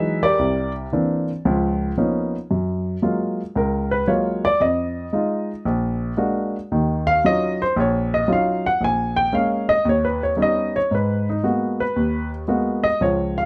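A dark, mellow baby grand piano plays relaxed, sophisticated solo jazz with a swung feel, its intimate, up-front sound captured by close, detailed microphones that reveal audible action noise and short sustain under light reverb, as it moves through ninth and thirteenth chords before settling into a new section at 2.5 seconds, where augmented chords enter, in this brief cut from a longer piece.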